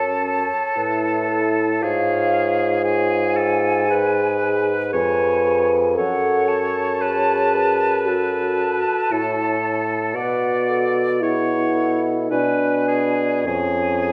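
Classical slow romantic movement for wind quintet in F# minor, a melancholic, yearning passage taken from a longer piece and moving at 57 BPM in 4/4 with a rubato feel, tuned to A4 = 437 Hz. An airy, close-miked concert flute carries the expressive melody with vibrato and a soft attack, while a bright oboe with a smooth top sings the second line alongside a distant, roomy French horn and a mellow clarinet tucked in the background. An up-front bassoon anchors the bass with light vibrato as the harmony drifts from F#m through C#7/G# and Bm to close on C#/E# at 13.5 seconds, all within a wet recital hall reverb.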